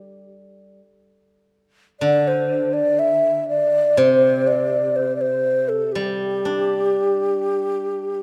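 Set in a moderate concert-hall reverb, this festive, graceful piece of Chinese traditional chamber music, cut from a longer work and flowing in a free, rubato 4/4, opens with a fingerpicked steel-string zither laying down a silvery, ringing low accompaniment, before an up-front, end-blown bamboo xiao enters at 2.0 seconds with a breathy, hollow, soft-attacked melody colored by vibrato, riding clearly above the quieter zither until the close at 8.2 seconds.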